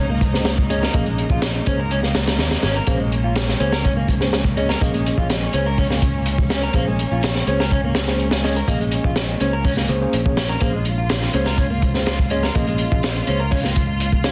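Dense, heavily limited and dusted with vinyl crackle under light reverb, this raw, energetic breakbeat excerpt at 124 BPM in Bb minor rides a gritty, saturated drum kit with a high-tuned snare, whose kick drops out from 1.9 to 2.9 seconds, over a growly picked electric bass, a dark, slightly broken-up electric guitar riff and mellow tine electric piano stabs both trailed by dub echo, and lush bowed symphonic strings sustaining chords from a Bbm9 opening with sidechain pumping.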